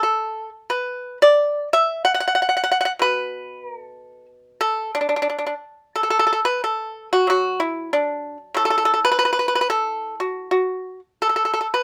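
A lone acoustic pipa, played with fingerpicks, opens this flowing, serene piece of Chinese traditional music, moving in a rubato 2/4 at around 86-96 BPM and ranging from A2 up to F#5. Its percussive, dry tone sits up front with little reverb, tuned slightly low to A4 = 439 Hz. At 6.0 s the music moves into a new section that carries on until this cut from a longer piece ends at 11.8 s.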